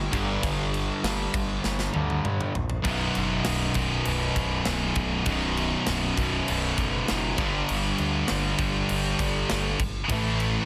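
Heavy metal at 99 BPM in 4/4, this dark, relentless excerpt grinds along on power chords moving from G5 to B5, back to G5, and up to A5 near the end. Three distorted guitars stack the riff: a bright, double-tracked one sits in the background, a sludgy, overdriven one adds dark weight, and a bright high-gain guitar joins up front at 2.8 seconds. Underneath, a growling picked electric bass with overdrive thickens the low end. The drum kit sounds polished and airy in a big room, with a tight kick, a medium-tuned snare, toms and bright crash cymbals, and a fill between 1.6 and 2.9 seconds leads into the fuller band. The mix carries light reverb and a dense, heavily limited modern master that keeps the whole passage pressing forward.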